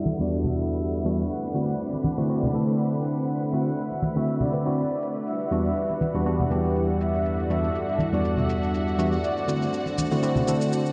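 Late-night and deep, this deep house excerpt in E minor moves at 121 BPM with a 55% swing on the sixteenths, as worn, slightly out-of-tune tine electric piano stabs sit up front with light overdrive, tape echo and a filter sweep over Em9 and D7 chords, while a breathy, flute-like synth lead with subtle chorus and cassette-tape coloring carries the melody until 9.9 s, a detuned sawtooth analog pad and a very quiet, moody ambient pad sustain beneath a distant bowed violin section with vibrato, and an electronic, layered shaker and small-room acoustic congas add percussion, the whole mix soaked in lush hall reverb and a dreamy low-pass haze.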